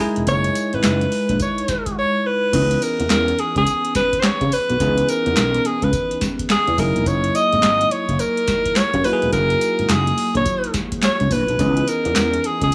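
Confident and punchy, this short cut from a longer new jack swing R&B piece moves at 106 BPM in 4/4 with a swung sixteenth-note feel, set in C# dorian and alternating between F#13 and C#m9 chords. A bell-like tine electric piano opens at 0.0 seconds, its bright, clean tone colored by a phaser as it supplies the chordal accompaniment. Almost at once a growly fretless bass with ensemble chorus enters alongside a booming analog drum machine, whose deep kick, crisp snare, metallic hats, handclaps, tambourine and crash cymbal carry a short room sound on the snare, clap and hats. From 0.3 seconds a clear alto saxophone takes the lead, up front and jazz-inflected, with vibrato, subtone and scooped notes in a solo voice sitting above the band. Light digital ambience gives the mix a touch of space, keeping the horn present.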